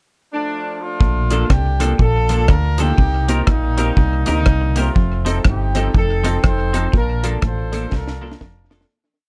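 Lightly reverberant, this short, upbeat and cheerful ska piece opens with a distant, roomy horn section playing a loose, motif-based hook in a pickup from 0.3 s, given a plate reverb. At 1.0 s the dry, dark reggae drum kit with its tight kick and high-tuned snare sets up a ska beat with a side-stick backbeat, beside a round, up-front dub bass walking with slides and a very quiet semi-hollow guitar doubling the bass line with muted picking. Over these, a bright, compressed semi-hollow guitar chops the off-beats along with a woody upright piano in the background, both on plate reverb, before the piece fades out from 6.9 s and closes on a drum fill at 7.9 s.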